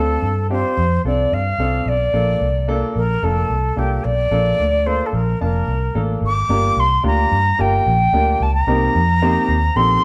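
A silver concert flute, a clear baby grand piano and a muted electric bass all start together in this short, joyful cut from a longer uptempo 1960s-style soul number, set in Bb major at 110 BPM in a straight 4/4 and tuned slightly low to A4 = 435 Hz. The flute carries the melody with an airy, metallic tone, tongued notes and vibrato, sitting prominently in the balance while keeping a slightly distant quality. Beneath it, the fingered bass is dark, round and punchy, its foam-muted, amped sound pushed up front in the low register. The piano supplies natural-sounding accompaniment that sits a little further back, moving from Dm7 to Bbmaj7 before a new section begins at 6.5 s and shifts the harmony through Gm7 to Cm7. The band plays live in a moderate stone room whose reverb surrounds the whole warm performance.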